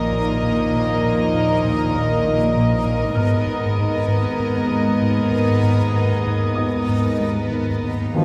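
An ominous, eerie stretch of suspense film score at 98 BPM opens on soft-attack, sul tasto strings: two violin lines floating over an intimate viola section and very quiet cello and double bass, with a dark French horn section, a tense bowed-like drone on Eb2, a round analog bass riff, a felt-muted upright piano, a distant, woody studio violin section high above, and a reversed, granular swelling texture entering at 0.2 s. The harmony moves from Bbsus4 to Abmadd9 at 3.2 s, all set back in a roomy scoring-stage reverb. At 8.1 s a trombone section and hard-mallet timpani strike in just as this cut from a longer piece ends.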